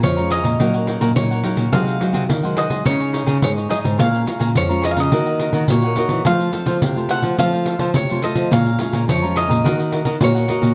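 Lively and nostalgic, this short samba and choro fragment sets a bright, double-strung bowl-back mandolin melody over two fingerpicked nylon-string guitars: one fresh-strung and small-sounding in accompaniment, the other full-bodied and deep on the bass line. A jingly pandeiro played with hard hands marks the straight 4/4 feel, and a crisp, picked cavaquinho joins at 0.2 s, sitting softest in the blend. The dark, warm production wraps the acoustic ensemble in moderate studio reverb.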